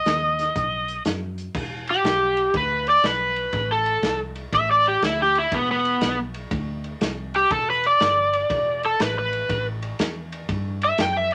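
A swung shuffle drives this brooding, mournful electric blues, cut from a longer piece, with a crunchy breakbeat drum kit of dark cymbals, a tight kick and a gritty, saturated tone beside a vintage muted fingered bass that sounds round and punchy. Up front, a bright, overdriven slide guitar played with fingerpicks carries the melody, breaking into a solo at 1.5 s that runs to the end over a moody minor progression. A small room reverb adds modest space around the playing.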